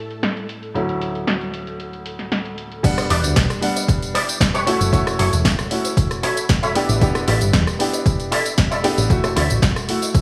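A straight 115 BPM pulse in 4/4 drives this sensual, sleek nu-disco cut in E dorian, where an up-front baby grand piano with short sustain and tape echo and a house drum kit with low-pass filtered, tape-warm hats, snare and cymbals carry the opening alongside a lush, chorused string machine that pumps against the beat until 2.9 s, before the drop at 2.8 s brings in a punchy electronic kick, a bright, twangy envelope-filtered guitar riff with 12-bit grit and echo, and a fingered envelope-filtered bass with tube saturation and sidechain pumping over chords moving from Em7 to F#m7, A7sus4 and Dmaj9, all in light reverb.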